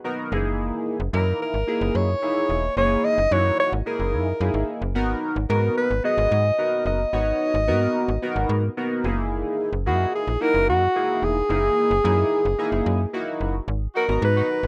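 Late-night and danceable, this funk excerpt moves at 110 BPM in a straight 4/4 feel, cut from a longer piece. A chorused polysynth opens at 0.0 seconds with a glossy, retro sheen, its pulse-width and sawtooth tones thickened by a sub octave, a filter sweep and a phaser, laying out sustained chords that shift between F#13 and G#m9. A slap-like FM bass enters just after with a snappy, metallic attack that then decays, sitting up front in the low register. From 1.1 seconds a breathy alto saxophone carries the melody as a solo, punchy yet smooth on top, with light vibrato and scooped notes in a pop style. Only near the close, at 13.9 seconds, does a tight horn section slip in briefly with octave doubling beneath the sax. The whole sounds like a rough home demo in a small room with moderate reverb.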